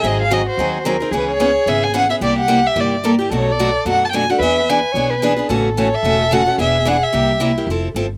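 A brisk, charming jazz manouche excerpt at 220 BPM opens with all four parts together. An up-front bowed violin carries the melody with expressive vibrato and portamento, while a soprano saxophone adds a soft-attacked, jazz-style second line with scooped notes and light vibrato. A bright, boxy parlour-type picked steel-string guitar sits close in accompaniment, a woody, growly pizzicato upright bass anchors the low end, and the swinging passage moves from G#7 through C#m7 and E7 to Fmaj7 at 7.7 seconds in a dry, open-air sound.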